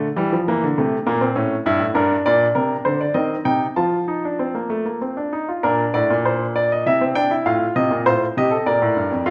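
A baroque-style classical fugue in three voices for solo baby grand piano, this serious, contemplative passage moves at 100 BPM in 3/4 with a straight feel, in B-flat major, spanning from F2 up to A5 across about 9.3 seconds cut from a longer piece. The piano sounds clear, polished and up front, set in a recital hall whose reverb lends a roomy, lingering halo. The harmony travels through diminished and dominant colors into G minor and C minor before a second section from 5.6 seconds settles through F7 back home to B-flat at 8.6 seconds.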